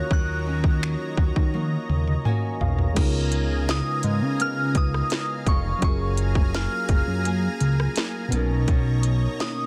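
A dense, heavily limited, dry mix carries this late-night, sensual contemporary R&B excerpt at 84 BPM, where a fat, detuned analog bass and a trap kit with a hard-clipped kick, sharp snare, crisp hats and 12-bit sampler grit sit up front beneath a pure FM synth bell melody with tape echo, muted felt-like synth keys with ring modulation, a fingerpicked nylon-string guitar playing arpeggios and a lush unison pad holding chords over D#m7, C#13, F#maj9 and Bmaj9, with a drum fill from 1.5 to 3.0 seconds and a keys fill from 1.9 seconds.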